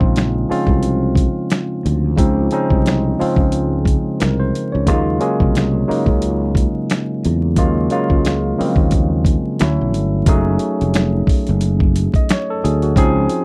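R&B and neo-soul in a smooth, relaxed swing, this short cut from a longer piece pairs a bright, barky tine electric piano, lightly overdriven through a combo amp, with a growly, punchy fretless electric bass colored by tube saturation. A dusty sampler-style drum kit, compressed and gritty with a thumpy kick, medium-tuned snare, hi-hat and finger snaps, sits up front with the other parts throughout. The sound is dry and close in a 1970s studio manner with vinyl crackle, and the harmony moves from Dbmaj7 through Ebm11 and Dmaj7 before a shift to Gbm6 at 10.3 seconds.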